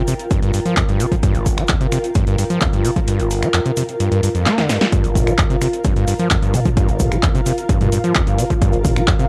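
Acid house with a trippy, driving mood, cut from a longer piece: a squelchy, resonant, distorted acid bass riff sits up front with sidechain pumping and tape echo, while a cloudy, detuned granular pad drifts behind it with its own reverb and pumping. A punchy, tape-warm electronic kick drops out from 3.1 to 4.9 seconds, and a drum fill from 4.5 seconds leads it back in. An analog drum machine supplies finger snaps, handclaps, metallic hats, a punchy snare and toms, with a grainy tube shaker in the background, all captured as a gritty hardware recording on cassette tape.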